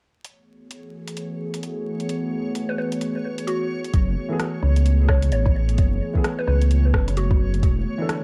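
Melancholic and ghostly, this future garage excerpt opens with a bright-hatted garage drum kit at 0.2 seconds, joined by a warbling, lo-fi tape-like pad holding sustained chords under sidechain pumping and a reversed, dreamy swelling texture, before a woody mallet-like synth pluck carries the melody through lush chorus, cassette tape and analog delay, and at 3.9 seconds a deep, rumbling detuned saw bass sits up front beside an overdriven soft electronic kick, with a muted, intimate felt upright piano arriving at 4.3 seconds to add accompaniment through dub echo in an echo-heavy mix dusted with vinyl crackle.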